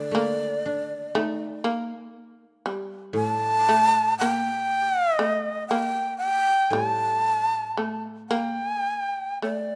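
The rhythm flows freely in rubato around a slow pulse of 59 BPM in 4/4, giving this short fragment of a longer piece of Japanese traditional chamber music a meditative, solitary feel. The end-blown bamboo shakuhachi carries the melody from 0.0 to 9.8 seconds, sitting up front between D5 and A5 with a breathy, bright tone, crisp chiff on its attacks and expressive vibrato. Beneath it, the shamisen plays a second line in a narrow low register from G3 to Bb3, its plectrum-plucked, fretless strings sounding percussive and buzzing while also placed close to the listener. The koto supplies accompaniment from A2 to Eb4, its fingerpicked notes mellow, dry and woody, and it sits lowest in the balance. The ensemble is heard in a recital hall with moderate reverb, lending the slow, contemplative lines an open sense of space.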